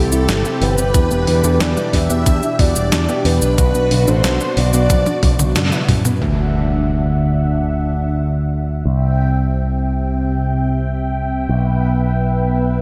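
A straight 4/4 pulse at 91 BPM drives this nostalgic synthwave in E minor, where a thumpy electronic kick and a tape-warm 12-bit drum machine with a fat snare, hi-hat, cabasa and toms play under an up-front, bright picked bass with an envelope filter, a brassy detuned sawtooth pad, a soft round pluck on arpeggios, very quiet concert grand piano stabs, a full octave-layered lead melody with chorus, tremolo and tape echo, and a shimmering vintage string-machine violin line in the background, until a drum fill from 4.9 s gives way at 6.2 s to an electronic impact, leaving the pad and bass to carry a dreamy, reverb-soaked close.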